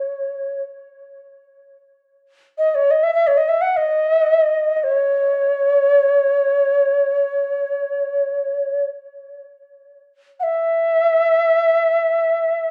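World meditative music with a haunting, spacious mood, this excerpt features a lone Native American-style cedar flute playing across the full 12.7 seconds, its pure, woody tone shaped by a soft attack and gentle vibrato. The flute sits up front, yet the wet studio reverb lends it a distant quality, while the cassette tape adds a homespun texture. Its opening phrase returns at 9.6 seconds before the recording is cut off.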